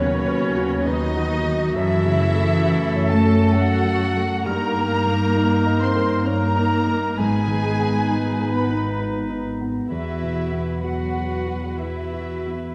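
From the opening, a con sordino violin section carries a veiled melody while a second violin section, an airy flute section, a punchy solo oboe and a very quiet clarinet play second lines alongside a mellow, felt-muted upright piano and a lush viola section. Dark French horns hold sustained chords in the background as cello and up-front double bass sections anchor the low end, every string section bowed and muted. Hopeful and uplifting, this cinematic passage in E major drifts in rubato 3/4 at 66 BPM, bathed in scoring-stage reverb, and is cut from a longer piece.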